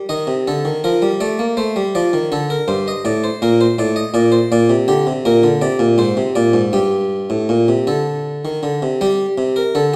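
Set in the lush reverb of a recital hall, this brief cut from a longer baroque-style two-part invention in 6/8 features a solo harpsichord up front, its plucked, round Italian tone from a single set of strings carrying a contemplative yet driving mood from the first moment to 10.0 seconds.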